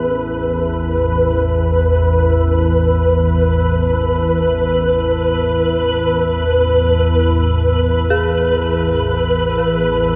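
An unsettling, desolate dark ambient drone in free time, in which a dark, detuned synth bell plays eerie, inharmonic arpeggios that fade in from the background, colored by chorus, tremolo, delay and shimmer reverb. Up front, a calm organ-like drone holds low and sustained with a wave-folded edge and ensemble chorus, while a grainy, flickering granular texture hangs above it on a single high note. The whole excerpt sits in a huge, wet reverb, and the A5 harmony drops away at 6.6 seconds.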